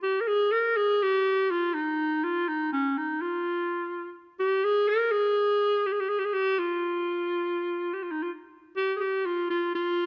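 Soulful and hypnotic, this brief Turkish passage in free time unfolds in makam ussak on F, tuned to A4 = 438 Hz, and is cut from a longer piece. A lone clarinet carries it from start to finish, sitting up front with a bright, punchy, vintage tone, light vibrato and a forceful, jazz-inflected delivery between Db4 and Bb4, shifting into a new section at 8.8 seconds. Light reverb and a dark, warm production frame the solo line.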